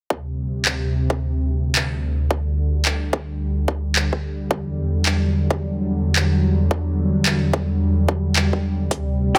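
A swung 109 BPM glitch hop groove in 4/4 opens at 0.1 s with a tight, layered electronic kick, joined at 0.7 s by a drum-and-bass kit of handclaps and metallic hi-hats, both re-recorded in a small room and kept up front. Alongside them, a smooth, detuned sawtooth analog pad sustains D7sus4 and then Em9 chords in E minor, treated with chorus, phaser and sidechain pumping, giving the dry mix a gritty, swaggering mood. At 9.4 s, a slightly broken-up, lo-fi electric guitar through a small old amp lands a compressed, picked stab with harmonic tremolo and pumping of its own.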